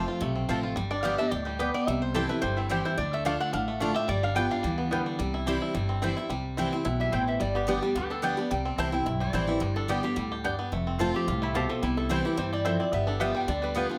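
A lap resonator guitar, nasal and metallic under its slide and played with fingerpicks, carries the melody until 5.2 seconds, then returns at 6.7 seconds for a steel-bar solo in this joyful, lively bluegrass excerpt in C major, swung at 217 BPM in 4/4. A twangy, percussive banjo played with fingerpicks also plays melody throughout. A bright, full-bodied, up-front dreadnought acoustic guitar picks the accompaniment, a woody mandolin with doubled strings adds stabs, and a dark, thumpy pizzicato upright bass holds the low end, all in light reverb over chords that move through F, G, C, Dm and G7.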